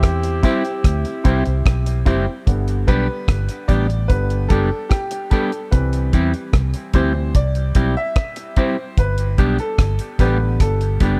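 Roots reggae with a warm, laid-back mood, opening on a brief mellow, punchy horn section line soaked in dub echo that stops at 2.0 seconds, over a deep, dry drum kit of hi-hat, tight kick and rim click, and a round, foam-muted vintage electric bass sitting up front. A clean, fingered electric guitar with dub echo and a woody upright piano come in at 0.4 seconds, and from 2.5 seconds the piano takes a clear, open solo as the chords move between C and G. The dark production sits in a small room, and the music is cut from a longer piece.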